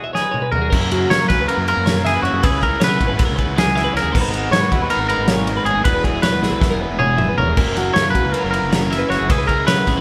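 A straight 9/8 pulse at 315 BPM in eighths drives this bright, wistful math rock and midwest emo passage, where an up-front twangy electric guitar carries the melody over a second, background twangy guitar's accompaniment and a compressed twelve-string electric guitar's phaser-tinged arpeggios, while a loose indie drum kit with a tight kick and medium-tuned snare opens with a fill at 0.1 seconds, a double-tracked overdriven stack guitar riff and a growly fuzz fingered bass join at 0.7 seconds as the chords move from Emaj9 through F#7, C#m7 and G#m7, another drum fill arrives at 6.4 seconds, and the whole band sounds as if playing live together in one large studio room with moderate reverb.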